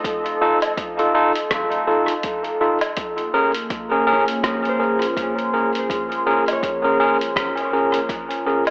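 Meditative and hazy, this short ambient dub fragment moves at 82 BPM in Bb minor with a swung sixteenth-note feel, shifting from F7 to Bbm7 at 3.0 seconds. A deep, moody pad holds sustained chords throughout, its detuned sawtooth body and sub octave softened by chorus, slow attack and long release. In the background a thumb-plucked concert harp rings out arpeggios through a low-pass filter and tape echo. Up front, an overdriven tine electric piano enters at 0.4 seconds with bright, barky, gritty stabs pushed through a combo amp and dub echo. Underneath, a punchy layered electronic kick sits beside a muffled, pitched-down sampler-style kit of hi-hat, rim click and woodblock, itself thrown into dub echo. The whole mix is echo-heavy with a wet spring reverb and an AM radio sound.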